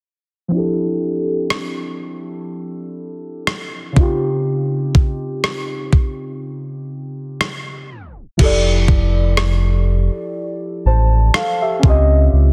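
A slow, swung sixteenth-note groove in 4/4 sets a smooth, dreamy contemporary R&B mood in this short cut from a longer piece. Muted, felt-like synth keys open at 0.5 seconds with soft, dark, decaying tones that blend triangle and sawtooth waves with a noise layer, colored by chorus and phaser and shaped by a filter sweep. A gated 80s digital drum machine follows with a thumpy kick, rim click and crash cymbal, its tape-warm, sampler-style sound re-recorded in a small room and placed up front. The harmony moves between Fmaj13 and Dbmaj9#11, and during a break that begins at 6.4 seconds, a tape stop brings the music to a halt at 8.4 seconds. There a deep, full sine sub bass doubled at the octave arrives for the closing section, with light reverb and digital ambience framing a dense, heavily limited modern master.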